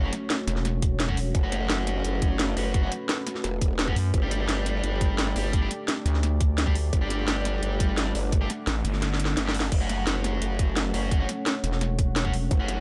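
Set in a digital ambience with an up-front low end, this aggressive, dark excerpt of technical drum and bass at 172 BPM in F# phrygian pairs a wobbling, formant-filtered growl bass with a thick FM bass that comes in at 0.5 seconds, over a tight layered electronic kick and a kit of cracking snare, metallic hats and crash, while a deep, detuned analog pad pumps through sustained F#m and Gsus2 chords, bright distorted guitar stabs ring out through dub echo, and a faint noise sweep leads into a drum fill as the kick drops out at 9.0 seconds.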